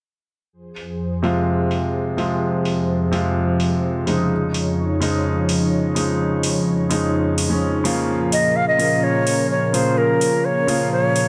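Set in a moderate hall reverb, this euphoric, anthemic festival progressive house excerpt at 127 BPM in F minor opens on a lush, detuned sawtooth pad holding slow-attack chords through chorus, joined by tape-warm, low-pass-filtered metallic electronic hi-hats and an intimate, up-front grand piano with long sustain and audible action noise ringing through digital delay, before an airy, reedy flute carries the melody from 8.3 seconds as the harmony moves from Fm through Dbadd9/F to Bbm.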